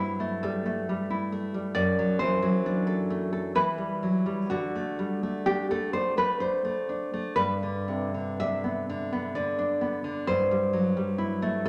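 In a three-beat metre with uneven, rubato timing, this short fragment of a romantic piece for solo classical guitar unfolds in a tender, nostalgic mood. The fingerpicked nylon-string guitar sits up front, full-bodied and deep in tone, drifting through Am7/G, D/F#, Em, D and G before returning to Am7/G near 10.3 seconds. A wet, large studio reverb surrounds the instrument with a lingering sense of space.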